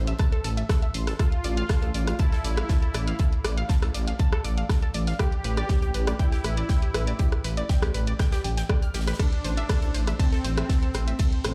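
A dry mix, heard as if played on a big sound system in a bare room with large studio reverb, carries this driving, hypnotic melodic techno cut in A minor at 120 BPM in straight 4/4, with a menacing, saturated detuned saw bass holding A1 and pumping with sidechain, beside a punchy electronic kick up front. Around them sit a house drum kit of bright hi-hats, ride cymbal and rim click, plus a polished acoustic studio kit with hi-hat and medium-tuned snare set in the background behind high-pass filtering. Warbling, vintage unison pluck arpeggios with tape echo and ring modulation ripple from G4 to F6, and a smooth, soft-attack supersaw melody with delay joins at 1.2 s as the harmony moves from A5 through Dm/A, G/A at 5.2 s and Am at 9.2 s.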